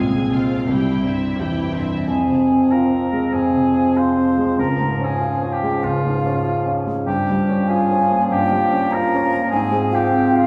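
Heard from further back in a reverberant recital hall, this brooding, passionate classical passage in F minor moves at about 97 BPM in 4/4, its beats uneven and pulled by rubato. A concert grand piano sits up front, carrying the melody with a deep bass and an open tone, while a very quiet, mellow solo clarinet plays a second line throughout. For the opening 2.1 seconds, a lush, bowed violin section shares the melody from a distance, supported by a viola section with a smooth vibrato, sustained chords from a close-miked French horn section in the background, and a barely audible cello section on the bass. The harmony passes from F minor over C to C, then settles back on F minor as the strings and horns drop away. From there until the close at 10.5 seconds, a hollow concert flute with lifted highs and a soft attack takes a second line above, joined by a roomy oboe with light vibrato and a distant bassoon quietly sounding a single low note.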